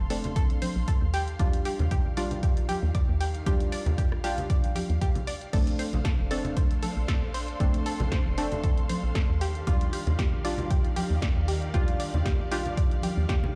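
A swung sixteenth-note deep house groove from a punchy, up-front electronic kick and a dry analog drum machine of snare, hi-hat, rim click and crash, with soft-handed congas ringing in the background, carries this soulful, relaxed excerpt, where a hollow, bouncy FM bass, deep mellow chord stabs and round analog pluck arpeggios pump over Bbmaj9 and Ebmaj9 chords, the stabs and plucks trailing chorus and dub echo, while a lush bowed string section fades in behind them and a silky vintage string machine with gritty sampler texture joins at 5.5 s, the whole mix sounding as if played on a big sound system in a bare stone room.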